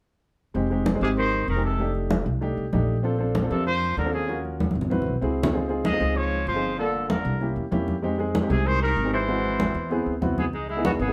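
Driving and fiery, this short Afro-Cuban jazz passage in F minor moves at a brisk 192 BPM in straight 4/4 and is clearly cut from a longer piece. A baby grand piano and upright bass start together at 0.5 seconds, the piano comping up front with a natural tone while the woody, pizzicato bass on steel strings anchors the low end close to the listener. Ringing, medium-tuned congas played with soft hands join almost at once, carrying a live-room sound, and a drum fill arrives between 4.6 and 5.5 seconds. The trumpet leads the melody from 1.0 second with a soft attack and scooped notes, sounding roomy and slightly distant yet still forward in the blend, while a clear, vintage-toned tenor saxophone with vibrato adds a lower second line beneath it. The harmony shifts restlessly through chords such as Fm7, Bbmaj7, Ab7alt and C7b9 before landing on C#m9 at 10.5 seconds, all set in a moderate studio reverb.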